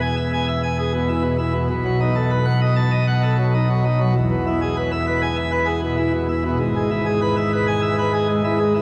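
Classical organ toccata, dramatic and stormy, this brief cut from a longer piece features a solo pipe organ on full plenum with bright mixtures, baroque voicing and audible chiff, placed up front yet ringing into a long, wet cathedral reverb as it moves from E through B7 and back to E before landing on E/G# at 6.6 seconds.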